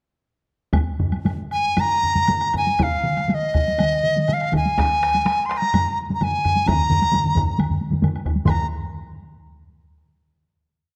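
Japanese traditional taiko drum ensemble music, powerful, driving and speeding up throughout, in which several layers of heavy-stick taiko play repeating patterns and taiko phrases, entering in turn between 0.7 and 3.0 seconds, one close and dry, one in a live room and two compressed and saturated, with a woody woodblock pattern in the background and an up-front large dizi entering at 1.5 seconds, its bamboo tone bright and pure over a buzzing membrane, carrying a tongued modal melody with vibrato and ornaments through a wet concert hall reverb before a final note at 8.5 seconds.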